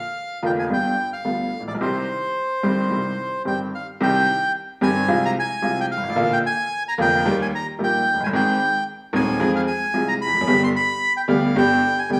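Sultry and tense, this short excerpt of a tango moves with a rubato feel in 4/4, cut from a longer piece. A reedy, airy bandoneon carries the melody up front from the very start, singing in a high register. At 0.4 seconds a bright upright piano joins as accompaniment, its woody, slightly detuned tone ringing with long sustain and audible action noise that gives it an intimate, close presence. The harmony drifts through dominant and minor chords before a second section begins at 4.0 seconds, moving through Fm/C, Bb, Eb, Ab and Fm before settling on G. Both instruments sit in a small room ambience touched by a wet, large studio reverb, and both play through to the end at 12.2 seconds.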